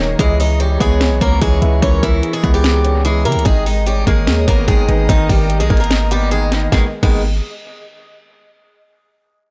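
A deep, boomy 808-style bass sits up front in this short, menacing trap excerpt, its fast attack and decaying sine tone carrying a noise layer under a half-time feel at 147 BPM in G# harmonic minor. A trap kit enters at 0.2 s with a hard-clipped kick, sharp snare, metallic hi-hats and crash cymbal. The melody comes from a bright, boxy picked acoustic guitar with a swing lilt, trailed by dub echo, while a baby grand piano with long sustain fills in accompaniment over chords moving from C#m7 to G#madd9. In the background, a velvety synth lead blending sawtooth, detuned and wave-folded triangle tones adds a smooth second line with soft attack, vibrato, chorus and dub echo. Beneath it all, a very quiet, distant symphonic string section holds lush, woody bowed chords until 6.9 s, and the echo-heavy digital ambience deepens the brooding mood.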